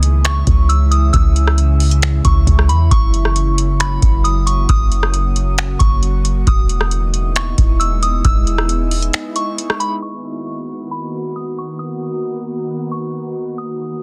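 A dense, heavily limited mix with a low-pass filter and little room sound frames this floating, dreamy cloud-rap fragment in B major at 135 BPM, felt in half-time. Up front, a booming analog drum machine with a deep kick, metallic hats, finger snaps, rim clicks and a softly clipped snare sits beside a clean, sine-like 808-style bass. Beneath a soft, pure synth bell melody treated with chorus and tape echo, a glassy, ethereal FM pad with ensemble chorus and its own reverb pumps through C#m, F#7 and Emaj7; the bass stops at 9.1 seconds and the drums at 9.9, leaving the pad and bell alone on a Bmaj7 from 10.0 seconds.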